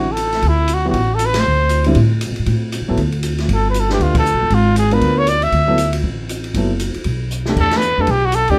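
A breathy, whispered trumpet carries the melody from the start with vibrato and a soft attack, sitting up front in plate reverb over an intimate vintage upright piano with audible action noise and a woody pizzicato bass. A distant, roomy drum kit with dark cymbals and a boomy kick joins at 0.2 seconds. This brief cut of playful, warm small-group swing and bop in D mixolydian moves at a brisk 235 BPM in 4/4, with band accents along the way and a drum fill at 7.3 seconds leading into the last one.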